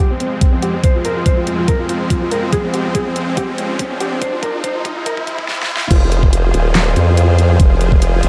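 A swung, half-time 4/4 groove drives this aggressive, heavy wobble dubstep fragment, where a soft, felt-muted upright piano with audible action noise and digital delay carries the melody over huge, detuned supersaw chords pumping with sidechain, while a background riser and an overdriven, layered drum kit of crash, handclaps, hi-hat and huge snare build through a filter sweep and drum fill beside a knocking, up-front electronic kick, until the drop at 5.9 s unleashes a compressed formant-sweep wobble bass thickened by chorus and overdrive.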